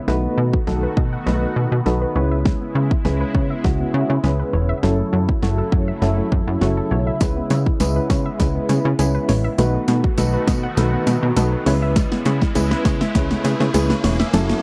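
Dance-pop in C# minor at 101 BPM, this driving, confident passage is cut from a longer piece and plays as one long build-up, moving through B7, C#m7 and F#m7 chords. Up front, a punchy, overdriven pop drum kit with a fat snare and layered electronic hits carries a drum fill throughout, while a plucky, funky analog bass pumps underneath with sidechain motion. A soft, dark electric-piano-like synth shimmers with chorus and tremolo, and a detuned supersaw swell sustains chords through a phaser, its evolving tone mellowed by a moving notch. Farther back, a gentle, round pluck spins arpeggios coloured by ring modulation, chorus and slapback echo. A jingly tambourine joins at 7.2 seconds, and an electronic riser enters at 9.4 seconds, all captured in a dry, close 1970s-style studio sound.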